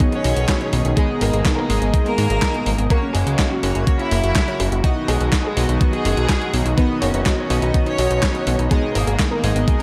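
A romantic, danceable italo disco groove opens at once with a thumpy, overdriven electronic kick sitting up front, alongside a sampler-style drum machine whose handclaps, hi-hat and medium-tuned snare carry overdrive and gated reverb. Underneath, a smooth, detuned analog pad holds sustained chords with chorus and tremolo, while a warbling, lo-fi pluck spins arpeggios in the background through chorus and digital delay. A glossy, retro polysynth adds sustained stabs with filter sweeps and a sub octave, and a fat, thick analog bass enters at 0.2 s, up front with a moving notch. From 0.1 s a clear chamber violin section carries the melody with intense, bowed vibrato and a touch of digital delay. The chords cycle through B, G#m and F#, and the whole excerpt sits in light reverb, cut from a longer piece.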